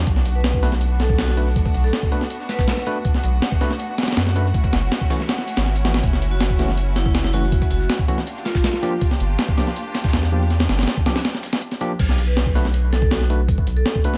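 Dark, bowed chamber strings hold sustained chords over a thick, saturated sub bass from the outset of this atmospheric, nostalgic drum and bass and jungle cut at 161 BPM in B minor, as an up-front, gritty breakbeat kit with a thumpy kick and crash drives alongside a high-passed dusty soul kit of hi-hat, shaker and snare tucked in the background, while a barky, overdriven tine electric piano plays stabs through dub echo and a metallic, ringing hard-mallet vibraphone adds echoed melody phrases from 0.4 s, the strings falling away at 12.0 s as the chords return to Bm7 after a brief break.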